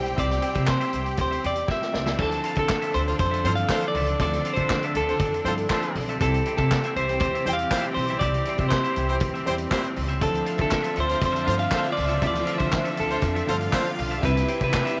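This driving, danceable disco cut opens in D minor at 120 BPM, in a straight 4/4, with a picked clean electric guitar solo over bowed string chords, a short-sustain baby grand piano and a thumpy, woody upright bass. The bass has a touch of transformer saturation. A vintage drum kit with a tight kick, dark cymbals, snare, hi-hat, handclaps and crash sounds gritty and mid-forward, with a rolled-off top, and its fill leads into the main section at 2.2 seconds, where the harmony moves between C and Dm9. The clean guitar carries the melody up front, while a bright, compressed semi-hollow guitar and the piano sit in the background. One biting string section holds sustained chords throughout. A second, lush string line returns at 10.2 seconds, and a pop-style horn section adds vibrato-tinged stabs from 3.1 seconds, all in a studio ambience with light reverb.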